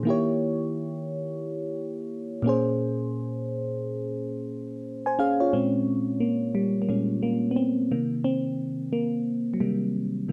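Soulful and late-night in mood, this short R&B excerpt moves at 88 BPM in 4/4 with a swung sixteenth-note feel, set in Bb dorian with tuning at A4 = 443 Hz. A mellow FM electric piano carries the whole piece alone, ranging from Bb2 to Ab5. Its tone is soft, round and dark, with a fast attack that decays and a noise layer in the sound. Chorus adds shimmer to the keys, which sit up front in a studio space with moderate reverb. The harmony moves from Eb7b9 to Bbm9 and later to Cm7. After an opening passage, a new section arrives at 5.5 seconds where the piano takes a solo through to the cut-off at 10.3 seconds.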